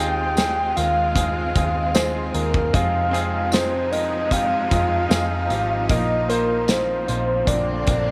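A light reverb gives this short, hopeful pop ballad excerpt a gentle sense of space, and the mood is heartfelt and unhurried in a straight 4/4. A soft, full synth lead carries the melody, its octave-layered tone blending a round sine and triangle core with a sub octave and a wave-folded edge, dressed in chorus, vibrato and a slapback echo. Beneath it, a polished baby grand piano plays present, clear accompaniment while a lush symphonic string section holds bowed ensemble chords with focused vibrato. A dark, amped hollow-body electric bass adds a round low end, and from 0.4 seconds a loose indie drum kit joins, up front with a punchy kick, a medium-tuned snare, hi-hat and a pumping small-room sound. A jingly, close and dry tambourine sits in the background until 6.9 seconds, as the harmony moves from Ab6/Eb through Fm7 to Bbsus4 and resolves onto Bbadd9.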